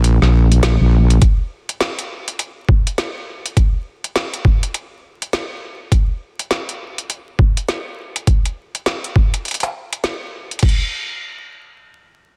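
A dense, heavily limited and dry mix with a layer of vinyl crackle frames this swaggering, gritty glitch hop excerpt at 102 BPM in 4/4, with a 61% swing on the sixteenths. A heavy, wobbling sawtooth-and-sine bass with chorus and tube saturation opens up front, then gives way at 1.2 s to a pitched-down, overdriven, thumpy electronic kick that drives on until 10.8 s. From the start until 10.8 s, a layered drum kit re-recorded in a small room adds a woody snare, metallic hi-hats and crash cymbal.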